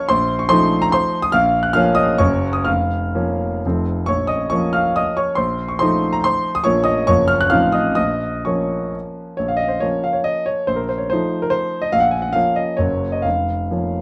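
A solo grand piano opens at once, clear and intimate, placed up front with its action noise audible beneath the notes. This is a romantic classical dance in triple time, its dotted rhythms carried on a flexible, rubato pulse that gives the music a nostalgic, wistful mood. The harmony stays rooted in a minor-key home, moving through dominant sevenths over a tonic bass, a major seventh colour and returns to the tonic chord, with the piano spanning from deep bass to the upper treble. Around 9.4 seconds a new passage begins that revisits the opening harmonic turns. The natural piano tone sits in light reverb within a dark, warm production, and the 14-second fragment is cut from a longer piece.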